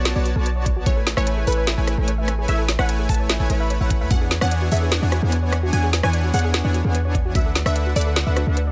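A deep, boomy 808-style bass with a mellow sine core and sidechain pumping anchors this euphoric, bright future bass excerpt at 148 BPM in a half-time feel in A major, alongside a smooth, evolving, detuned supersaw riff and, in the background, a lush, punchy, wave-folded unison pluck melody with delay and a soft, round, warbling pluck playing chorused arpeggios, all three pumping as well, while an up-front trap kit of woody snare, crisp hats and rim clicks runs throughout and a knocking electronic kick plays from 0.7 to 4.2 s and again at 7.1 s, set in digital ambience over chords moving from Bm9 through Amaj7 and E13 to D69.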